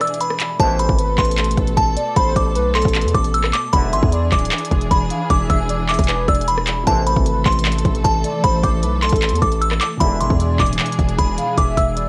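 Dark and hard-hitting, this trap excerpt moves at 153 BPM in a half-time feel, in A harmonic minor, cut from a longer piece. A delicate, tinkling FM tine bell carries the melody high above, with chorus, cassette tape and analog delay. A velvety sawtooth lead with unison, vibrato and chorus sits beneath it as a second line, under the same tape and delay treatment. The up-front trap kit punches with a hard-clipped kick, crisp hats, handclaps and rim clicks, and a heavy, saturated 808-style bass joins at 0.6 seconds with punchy, decaying notes. Behind them, a lush, woody string section holds distant bowed chords, while a mellow, intimate baby grand with audible action noise drops out after the opening break and returns at 6.8 seconds. A roomy, classical-style brass ensemble punctuates the harmony with brief low stabs as it alternates between E7 and Amadd9. Every part except the 808 is colored by cassette-tape grit, and studio reverb surrounds the whole mix.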